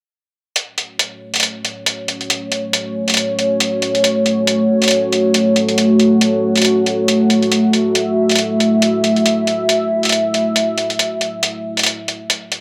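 A moderate spring reverb gives the recording a roomy, slightly metallic air, while both parts sit up front in the mix. This brooding, meditative slice of deep dubstep moves with a half-time feel in 4/4, its sixteenths carrying a gentle swing. An electronic hi-hat opens alone at 0.6 seconds, sampler-style and pitched down, its muffled, compressed tone roughened by overdrive. At 2.0 seconds a dark analog pad enters with sustained chords, blending detuned sawtooth and triangle tones over a sub octave, its slow attack and chorus lending a deep, moody shimmer. The two parts hold a single F# minor harmony through to 12.6 seconds in this short cut from a longer piece.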